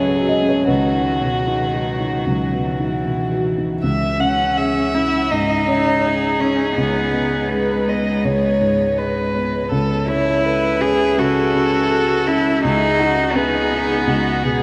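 A vast, echoing space surrounds this short fragment of neoclassical piano and strings in C# minor, its huge, wet reverb lending a melancholic, reflective air as the rubato 4/4 pulse drifts between 76 and 84 BPM. A felt-muted upright piano, mellow, vintage and intimate, carries the accompaniment through harmonies moving from C#m to G#m, F#m and B. A single cello plays a second line with light vibrato, soft attacks and an airy sul tasto bow, while one violin sings the woody, vibrato-laden melody, all three playing together throughout the 14.6 seconds.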